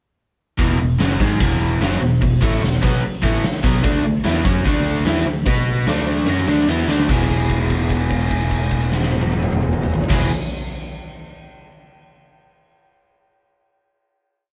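At 0.6 s the whole band kicks in together on a sunny, confident classic rock riff in straight 4/4. Two overdriven electric guitars share the power-chord riff, one bright and compressed, the other warmer with a biting edge. A growly picked bass, direct and amped, drives steady eighth notes that double the guitar riff. Up front, a huge arena drum kit with a punchy kick, fat snare and glittering cymbals lays down a big rock groove in a hall-like space and cracks out a fill at 6.3 s. At 7.1 s the band lands on a final held chord that rings out in a moderate room reverb, like a group playing live together, to close this short piece.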